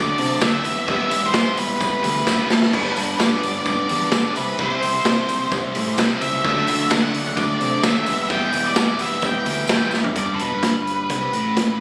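Wistful yet carefree, this indie rock excerpt in G major moves at 129 BPM, with a dark, fuzzy octave-fuzz lead guitar carrying the melody through tape echo while a biting overdriven guitar riffs up front in spring reverb and a bright cranked stack guitar with subtle chorus plays its own riff in the background. Beneath them a growling fingered electric bass is overdriven, a raw garage drum kit hits hard with a punchy kick and gritty, pumping small-room sound, adding fills around 2.3 s and 9.9 s, and a jingly tambourine sits back in the mix. A very quiet tonewheel organ holds fat chords with key click and slow rotary vibrato until 10.1 s, just before the progression lands on G at 10.2 s, and the excerpt has the lightly reverberant, roomy feel of a phone recording.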